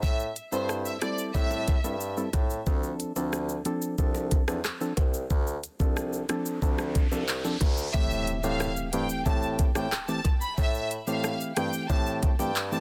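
A dry, knocking electronic drum kit with smooth hats, handclaps, rim clicks and shaker leads this bouncy, sultry dancehall excerpt at 91 BPM in A minor. A lush bowed violin section sings briefly with vibrato over a light-vibrato bassoon bass line, while a hollow, dark organ stab with chorus and very quiet high-tuned bongos join at 0.5 seconds over Am7 and Dm7 chords. An electronic riser builds from 6.4 seconds into an impact at 7.9 seconds, where the violins return for the second section in a dense, heavily limited mix.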